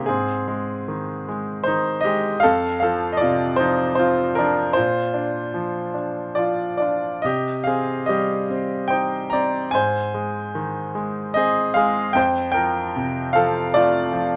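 A bright, intimate grand piano sits up front, its action noise audible as it plays alone across the full 14.4 seconds, ranging from F2 to Bb5. This wistful, dark classical fragment, cut from a longer piece, moves in a rubato 3/4 at roughly 69-79 BPM, with harmony passing through Ab, F, Bb and C minor before returning to Ab and F. A light reverb frames the lyrical playing.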